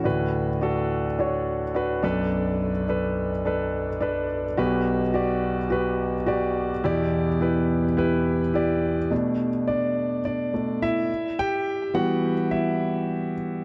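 Pop piano piece in a driving yet bittersweet mood, cut from a longer work and carried entirely by a concert grand that sits up front with intimate, polished tone, deep bass, long sustain and audible action noise, touched with delay. The harmony moves from D6 through Bm7, Gmaj7/B and Em7 before a solo passage beginning at 9.1 seconds returns to Bm7 and settles on Em. A moderate plate reverb and a dark, warm production lend the piano a soft glow.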